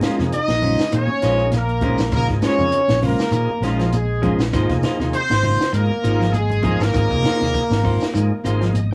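A bright, punchy horn section carries the melody up front over a warm trombone second line in this intense, hypnotic afrobeat excerpt at 100 BPM in Bb minor, driven by a round, dark fingered bass, a dry compact cocktail kit with a high-tuned snare and punchy kick, hard-handed congas and a grainy shekere, while two clean picked electric guitars play stabs and arpeggios alongside a thick, lightly overdriven tonewheel organ with key click and fast rotary speaker that adds a fill at 8.1 seconds, all moving from Bbm9 to Ab69 in a moderate live-room ambience.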